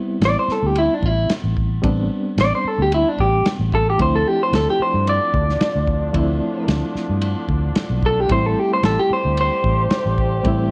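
Straight-eighth soul blues at 112 BPM in A minor, mournful and soulful, with a slightly broken-up, picked electric guitar through a small old amp carrying the melody up front over a reedy electric piano with fast tremolo, a round, foam-muted fingered bass, and a small-room drum kit of tight kick, medium-tuned snare and dark ride cymbal, while a clear horn section with vibrato and octave doubling adds soft sustained chords from 4.0 seconds as the harmony moves from Am7 to Dm7 and back, all in light reverb in this excerpt from a longer piece.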